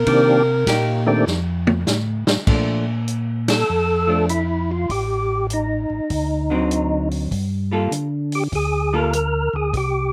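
A dry, close-sounding slice of bluesy, greasy soul jazz from an organ trio, with a swing feel. A mellow, subtoned alto saxophone with light vibrato and slapback echo states a brief phrase at the start, over a round, dark tonewheel organ playing the bass line with key click and slow rotary speaker. A second organ, fat and lightly overdriven with percussive attack, chorus vibrato and slapback echo, carries the melody from the start as well. A vintage drum kit with dark cymbals and a punchy kick plays a fill at 1.3 seconds, a clean, picked hollow-body electric guitar adds accompaniment, and the band hits an accent at 3.4 seconds.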